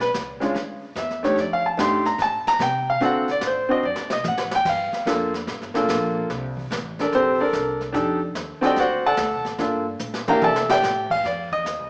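A grand piano solo opens this swinging jazz piano trio fragment, its smooth, vintage tone sitting up front as it moves through sophisticated changes such as Bm, F69, D7 and Gm7. Beneath it, a pizzicato upright bass with a woody, steel-string sound and a brushed drum kit with dark cymbals, a medium-tuned snare and a boomy kick keep the swing going, with drum fills at 3.8 and 10.0 seconds. A moderate recital-hall reverb surrounds the trio, though the overall sound has a small-speaker quality.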